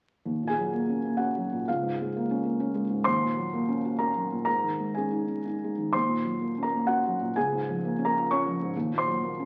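Neoclassical minimalist piano in Eb dorian, this short excerpt from a longer piece moves at 128 BPM in 3/4 with a rubato feel and a wistful, melancholic mood. A single felt-muted upright piano plays solo from 0.3 to 9.5 seconds, ranging from Db2 up to Db6. Its thick felt gives a soft, mellow, intimate tone, and the instrument sits up front with audible action noise. The harmony circles through Ebm7, Bbm7/Db and Absus4 before settling on Ebm at 8.7 seconds. A large studio reverb with a 1.2-second tail surrounds the playing, while the sound carries the crackle of a very old 78 rpm record.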